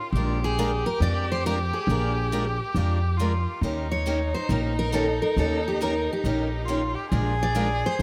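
A swung 4/4 pulse drives this lively, charming jazz manouche excerpt, where a woody, thumpy pizzicato upright bass sits up front beneath a bright picked steel-string acoustic guitar playing accompaniment, a second picked guitar with subtle chorus carrying the melody, and a smooth, vibrato-laden bowed violin adding a second line with delay, all bathed in a dreamy plate reverb as the harmony moves from Bb7 to Eb7 at 3.6 seconds and back.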